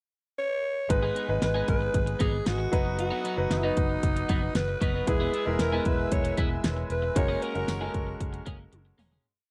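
A nostalgic, uplifting 1980s-style pop piece at 115 BPM in straight 4/4, where a raspy, gritty alto saxophone opens with a pickup at 0.4 seconds and carries an up-front, motif-based melody before the band enters at 0.9 seconds over G#m, B/F#, E and F#add9. A punchy, layered electronic pop kit with a fat snare and metallic hats drives a big backbeat alongside driving eighth-note bass from a dark, foam-muted fingered electric bass, while a clear concert grand piano adds syncopated chords with grace notes and audible action noise. A bright twelve-string electric guitar plays a funk-style rhythm riff through lush chorus, a brassy, detuned sawtooth pad with chorus sits in the background, and the dry, close studio sound fades out from 7.2 seconds into a closing drum fill.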